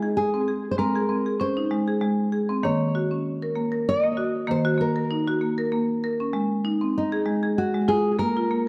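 A dark, warm production sits in a wet echo chamber, giving this short passage cut from a longer piece a soft, enveloping space. It is a meditative, hypnotic world piece built on tuned percussion, moving in a lilting 3/4 with a light swing on the sixteenths. From 0.0 s to 8.7 s, a marimba struck with medium hard mallets plays arpeggios up front, its padauk bars sounding woody, bright and airy with a percussive edge. Alongside it, a fingerpicked nylon-string guitar carries the melody in a classical style, its tone acoustic and shadowed, with audible finger squeak and a touch of tape echo. The harmony rests on Ab, shifts to Ebm, and returns to Ab, holding the music in a calm, circling trance.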